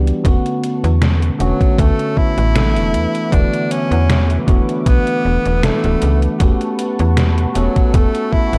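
A bell-like tine electric piano with lush chorus and a snappy, slap-like FM bass with tube saturation open this woozy, nostalgic vaporwave fragment at 78 BPM in 4/4, with a light swing on the sixteenths. They are joined almost at once by a thumpy electronic kick up front, a detuned 8-bit drum machine playing hi-hat and a tape-toned snare, and a thick, airy unison pad with phaser and 12-bit sampler grit in the background. From 1.4 s a bright tenor saxophone carries the solo melody with vibrato, a soft attack and tape echo, over chords moving from Bm9/E to D69/E to A13/E in a dark, dry production.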